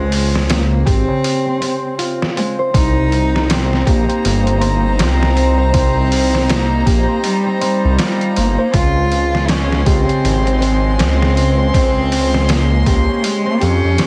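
A dark, woody cello carries the melody from the very start, bowed by one player with vibrato and set at a distance with a tape echo. Alongside it a ringing, thumb-plucked concert harp spins delayed arpeggios, and a deep, rumbling detuned saw bass sits up front with a saturated, beating tone. A gritty, sampler-style trip hop kit of thumpy kick, medium-tuned snare and hi-hat joins a moment later, overdriven and pitched down, with a swung, heavily compressed feel. After a break from 1.2 to 2.7 seconds, a studio violin section enters with sustained, reedy chords in a period, gut-string style, carrying light vibrato and 12-bit sampler grit. The harmony moves from Dbmaj7 to Cm7 and later a rootless Bbm9, and the dry, squeezed, radio-like sound gives this brooding, smoky trip hop fragment, cut from a longer piece, a close and murky atmosphere.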